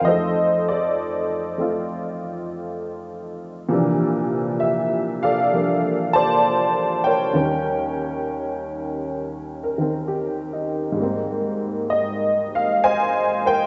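A detuned, jangly honky-tonk upright piano sits up front, with a woody, vintage tone, playing solo jazz at a relaxed 66 BPM with swung eighths in F major, tuned to A4 = 439 Hz. Its sophisticated harmony moves from F7 through Bbmaj9#11 and Eb7 to Abmaj9 across the 13.7-second excerpt, spanning Eb2 to A5. A wet recital-hall reverb gives the sound a church-like space with a soft, rolled-off top.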